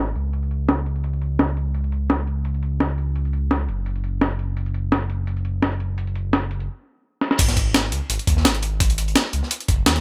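A mellow, up-front synth bass of sawtooth and triangle tones with vibrato and a moving notch opens this rolling, dreamy piece of liquid drum and bass, cut from a longer track, and is joined almost at once by a gritty, compressed sampler-style breakbeat kit whose crash, hi-hats and snare are low-pass filtered and bathed in studio reverb, before a stop at 6.7 seconds and a drum fill at 7.2 seconds lead into a drop at 7.4 seconds, where a thumpy electronic kick and a dark, rolled-off acoustic breakbeat kit with high-pass-filtered hats and snare, set in the background, fill out the small-room ambience.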